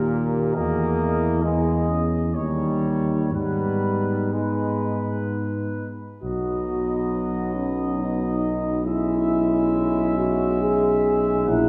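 A yearning, melancholic brass band piece in a hymn-like classical style, moving in a slow three with a freely breathing rubato, cut from a longer work. A dark, distant trumpet section carries the melody from the start, while a mellow French horn section with a soft attack sings a second line, sitting more forward in the blend than the trumpets. Beneath them, a bright solo trombone with light vibrato and a dark trombone section set in the background fill out the accompaniment, and a dark solo tuba, also with light vibrato, holds the bass up front. The harmony shifts from minor to major at 6.2 seconds, opening the second section onto a brighter footing. The whole band is heard from further back in a church, with a long, wet reverb that lets the chords bloom and hang in the air.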